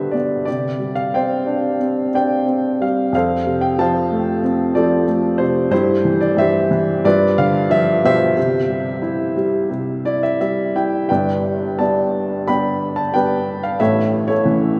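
Classical solo piano in C major, lyrical and bittersweet with a cool edge, moving at about 90 BPM in 4/4 with a loose, rubato sway. A lone upright piano, intimate and woody with a boxy body, audible action noise and long sustain, sits up front across the whole 14.8 seconds, its harmony settling from Csus2 through F and G7 to C before a short fill at 9.7 seconds leads into a new passage on G and A. The piano rings into a deep cathedral reverb of church or concert-hall scale, and the clip is cut from a longer piece.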